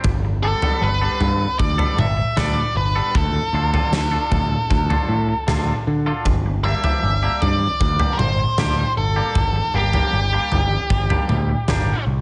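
An octave-fuzz lead guitar sits up front, its dark, distorted, picked tone carrying the melody between G4 and E5 from 0.4 seconds onward in this brooding, cathartic stretch of quiet-loud alternative rock. Beneath it, a clean, fingered electric guitar plays twangy, compressed arpeggios between D3 and A4, softened by a subtle chorus and a digital delay, and it sits lower in the mix than the other parts. A growling picked electric bass, bright and overdriven, anchors the low end from G1 to D3. A big acoustic rock kit, also up front, drives the straight 4/4 feel with a punchy kick, a fat snare and toms in a bright stone room. The harmony moves from Gadd9 to Dm to Gm, and the whole fragment is a single section, cut from a longer piece, with light reverb and a top end that stops short of 10.3 kHz.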